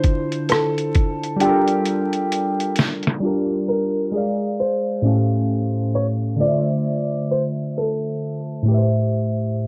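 Warbling, detuned synth keys with chorus and cassette-tape coloring carry the chords of this reflective, hazy lo-fi hip hop fragment at 66 BPM in G dorian, alongside a dark, woody upright piano melody through plate reverb and analog delay that stops at 8.6 seconds, while a muffled, pitched-down sampler drum kit with a thumpy kick and fat snare plays a fill from 1.4 seconds and drops out at 3.2 seconds as a filter sweep begins, beneath a layer of vinyl crackle.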